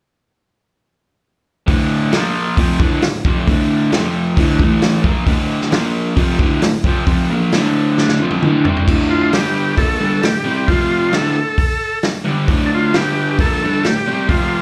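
A raw, overdriven garage guitar drives this gritty, menacing garage rock excerpt in D minor at 133 BPM, its double-tracked, picked riff carrying slapback echo up front beside a vintage acoustic drum kit with a punchy kick, medium-tuned snare and rolled-off top. After a drum fill leading into 8.9 seconds, a buzzy combo organ with heavy vibrato and overdrive enters at 9.1 seconds to carry the melody. The sound has the small-room feel of a live club gig heard through the venue's PA.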